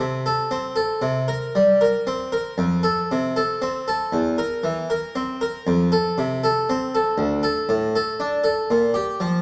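A solo Italian-style harpsichord opens this short cut from a baroque-style suite movement, its plucked, full tone from two sets of strings sitting up front and reaching from D2 to Bb4. At a rubato 78 BPM in 4/4, the flowing, solemn line settles into F major from 4.1 s, tuned to A4 = 439 Hz. A wet recital-hall reverb and a dark production surround the instrument.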